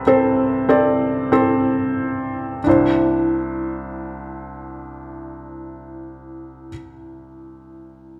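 Pop in C major at a slow 43-50 BPM in 4/4, this heartfelt, emotional fragment of a longer piece features a felt-muted upright piano as accompaniment, playing from 0.0 to 8.2 seconds across a range of C2 to D5. The piano sits up front with a soft, mellow, intimate tone, thin felt and audible action noise. It eases to a slower pace over the opening Amadd9/C before settling on Cadd9 at 2.7 seconds, all within a wet recital hall reverb.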